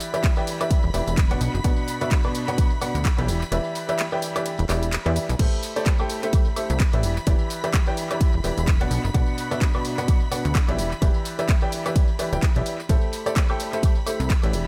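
Swung 16ths in 4/4 at 128 BPM drive this energetic, soulful piano house cut in E minor, where a clear, woody, slightly detuned upright piano riff with tape echo sits up front over a punchy electronic kick that drops out from 3.5 to 5.4 seconds, a funky sawtooth and pulse-wave analog bass with a fast-attack filter pluck entering at 0.8 seconds, a layered house kit of warm hats, handclaps, crash, ride, tambourine and woodblock carrying reverb and echo, and a lush, bowed violin section holding sustained chords in the background, while the piano, bass and strings pump to the sidechain as the echo-heavy mix cycles through Em7, Bm, Em7 and Am7.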